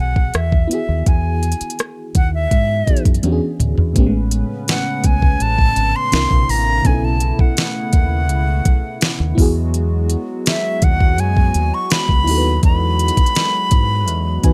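Contemporary R&B with a dreamy, smooth mood, this short excerpt moves at an unhurried pace in a straight four-beat feel. A breathy, close-miked concert flute carries the melody up front, its straight tone and tongued phrasing touched by analog delay, over an FM electric piano with tremolo that sounds full-bodied and dark, with a fast attack and decaying notes. Underneath, a round, punchy fingered electric bass holds the low end, while an electronic, produced drum kit enters at 0.2 seconds with a knocking kick, deep snare, smooth hats, rim clicks and toms, sitting tape-warm and up front. A drum fill from 3.2 to 4.0 seconds leads into the second section, where a hollow, nasal pad with a soft attack and chorus enters to sustain mellow chords beneath the rest. The harmony drifts through lush extended chords such as Emaj9, Amaj9 and B9sus4, and the electric piano adds a brief fill at 14.1 seconds in a dry, close-sounding mix.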